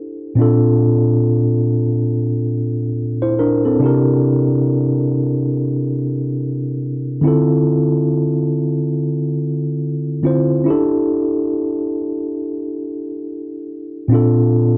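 A mellow tine electric piano opens this short reggae excerpt alone, playing from the start to 14.8 seconds and spanning a range from Bb2 to C5. The mood is bittersweet and smooth, set at 70 BPM in 4/4 with a 60% swing on the sixteenths, in D minor. The piano sounds clean, direct and up front, and the room adds a light reverb with a touch of digital ambience. Its harmony moves through Bbmaj7, C9, Dm7 and A7sus4 before returning to Bbmaj7 near 14.1 seconds. The recording has a dry, close 1970s-style studio character, and the passage is cut from a longer piece.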